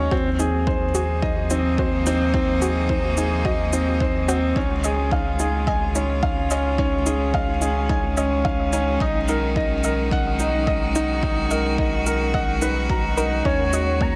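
Bathed in light reverb, this melancholic, cinematic piano and strings electronica opens on an intimate felt-muted upright piano riff with audible action noise and delay up front, over pumping sustained chords from a clear, bowed string quartet with light vibrato, a deep, round sub bass that also pumps, dark arpeggios from a soft pluck treated with chorus, cassette tape and delay in the background, a punchy overdriven electronic kick and a tape-warm shaker, before a velvety synth lead with chorus, phaser, vibrato and portamento enters at 13.4 s.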